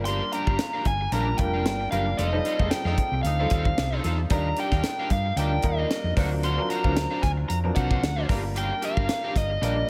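A polished small-room mix with light reverb frames this upbeat, breezy slice of 1980s jazz-funk pop at 113 BPM, swinging lightly on the sixteenths over a Gm7, F7, Ebmaj9, D7alt progression. A tight funk kit with a high-tuned snare and gated reverb sits up front beside a dark, round hollow-body bass, while a brilliant, worn grand piano with subtle chorus provides accompaniment and a twangy, slightly broken-up electric guitar plays a riff through an ensemble chorus. An overdriven, biting lead guitar carries the melody, and a soft-attack jazz horn section slips in behind it from 2.9 to 4.2 s during a band accent.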